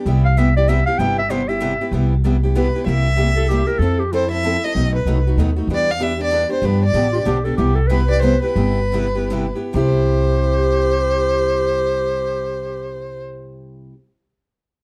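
A bowed violin carries the melody up front from 2.6 seconds, its expressive vibrato and portamento gliding over a lively, playful jazz manouche swing in 3/4 and C major that moves between 134 and 192 BPM and slows down from 7.6 to 9.7 seconds. A clarinet with soft-attack vibrato opens with a short jazz-style solo and then plays a second line, while a woody, thumpy pizzicato upright bass sits up front beneath two picked steel-string acoustic guitars: one bright with fresh strings, the other a boxy parlour instrument in the background, both showing finger squeak. The dark, warm production adds light reverb to this excerpt cut from a longer piece.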